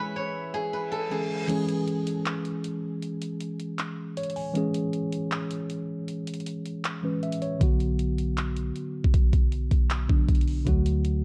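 Hip hop in a trap style, this dark, melancholic fragment of a longer piece moves with a half-time feel. It opens on a bright, silvery steel-string zither melody that rings up front through a low-pass filter and tape echo, set over a worn, slightly out-of-tune tine electric piano heard through its built-in speakers and soft, floating bowed strings in the background. A filter sweep and an electronic reverse cymbal lead into the drums at 1.5 s, where the strings drop out and the produced trap kit arrives up front with metallic hats, handclaps and a crash. The knocking kick is held back until 7.6 s, when a deep, boomy 808-style bass with a sine body and noise layer enters low in the mix as the harmony shifts from C#m to Bm and then D. The whole track carries a warbling cassette-tape patina with pitch drift and almost dry acoustics.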